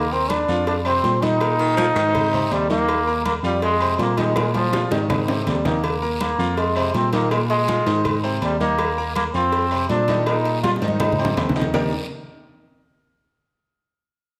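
A sunny, festive salsa excerpt opens with a bright, roomy trombone carrying the melody up front over brilliant, polished grand piano chords and a worn, slightly out-of-tune tine electric piano bass with light overdrive, while congas, ringing agogo bells and timbales, and tight high-tuned cowbell and bongos sit in the background alongside a raspy guiro. A gritty baritone saxophone with vibrato cuts in briefly at 1.6 seconds, drum fills close each half, and a large studio reverb wraps the band.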